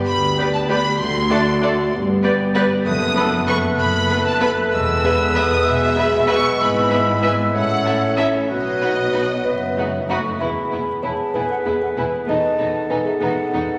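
Cinematic and whimsical, this playful, magical film cue moves at 64 BPM in a straight 6/8 in E major. A lush, distant violin section carries the melody over mellow, tight French horn chords, a dark double bass section and an expressive cello section. An airy, hollow flute, a roomy clarinet and a second, smooth violin section add supporting lines, while a punchy bassoon and a very quiet viola section with portamento fill in the accompaniment until the bassoon drops out at 10.1 s. A delicate, tinkling, slightly out-of-tune music box joins the melody at 9.4 s, all within a scoring-stage reverb and a layer of vinyl crackle.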